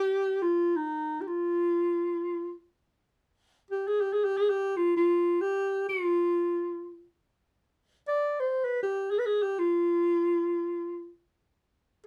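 A clear, punchy clarinet carries this short melancholic passage from a Turkish makam ensemble, playing solo from 0.0 to 11.1 seconds. Its tone is forceful and soulful, shaped by vibrato and scooped notes that give the phrasing a jazz-style inflection. Close-miked and placed up front, the clarinet stays in a compact middle register between Eb4 and D5. The performance was captured live in one room, with light reverb adding a touch of space around the instrument. The fragment, cut from a longer piece, holds a searching, mournful character across its brief span.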